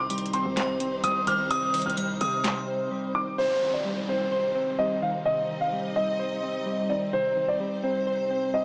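Heard as if through a small speaker, this brooding trap and hip hop excerpt sits in moderate plate reverb and digital ambience, moving at 128 BPM with a half-time feel over a held C minor chord. A dark, mellow grand piano carries the melody up front, its boxy tone softened by a low-pass filter and tape echo. Beneath it, glassy, wave-folded digital keys with chorus and a filter sweep supply the accompaniment, while lush symphonic strings sustain chords with vibrato and portamento. A ringing, inharmonic FM bell, bright and treated with chorus, phaser and tape echo, adds a second line only in the opening moments. A booming, dry analog drum machine, with a tonal snare, metallic hats and handclaps, drives the start alongside a punchy, heavy 808-style bass, and both have stopped by the break at 2.9 seconds. From 3.4 seconds an electronic downlifter enters as piano, keys and strings continue to the end.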